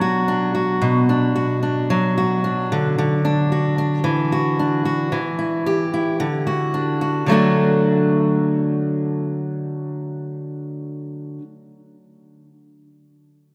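A fingerpicked steel-string acoustic guitar plays alone from the start, up front and warm, moving through Bm, Dadd9, Em and D in an easy-going, sunny pop vein. The guitar is bathed in a long cathedral reverb that places it in a vast, echoing space, and a second passage begins at 7.3 seconds before this short cut from a longer piece ends at 11.6 seconds.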